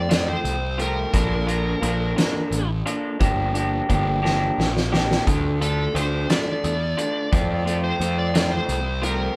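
A bright, overdriven lead guitar solos through this moody, bittersweet indie rock piece in 6/8, over chords moving from F through Bb, Gm7 and Dm back to F. Beneath it, an electric guitar through a small old amp plays a slightly broken-up, lo-fi riff with harmonic tremolo, while a fuzzy, picked electric bass holds the low end. A loose, roomy drum kit with a fat snare, tight kick and rolled-off top adds a fill from 4.2 to 5.3 seconds, and the band plays live together in one room with light reverb.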